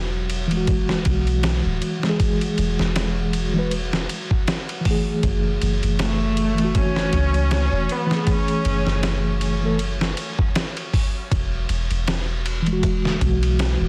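Vinyl crackle sits over a dense, heavily limited modern master in a digital ambience, framing this cinematic, melancholic trip hop excerpt at 79 BPM in 4/4 with a light 16th-note swing, moving from Eadd9 to F#m7 and back. A gritty, compressed sampler-style drum kit with a thumpy kick, hi-hat, ride and medium-tuned snare sits up front over a deep, round sine-like 808-style bass with tube saturation, while a mellow tine electric piano with tremolo and tape echo supplies the accompaniment and a tense, detuned string-like drone with built-in reverb hovers in the background. A distant, clear bowed cello carries the melody with vibrato and dub echo from 6.0 to 9.4 seconds.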